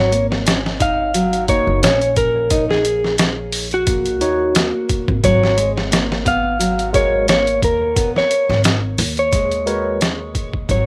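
A slightly broken-up electric slide guitar carries the melody up front with tape echo, over fingerpicked nylon-string guitar arpeggios with sampler grit and a woody, pizzicato upright bass, as a smoky, dark trip hop groove settles in at 88 BPM in G# dorian with a light 16th-note swing. A gritty, pitched-down sampler-style drum kit with a thumpy kick joins almost at once, and a bright, barky tine electric piano with harmonic tremolo enters at 1.5 seconds, while the harmony moves from D#m7 to G#m11 at 5.2 seconds. This cut from a longer piece has a rough home-demo sound with lossy artefacts and fades out from 8.9 seconds.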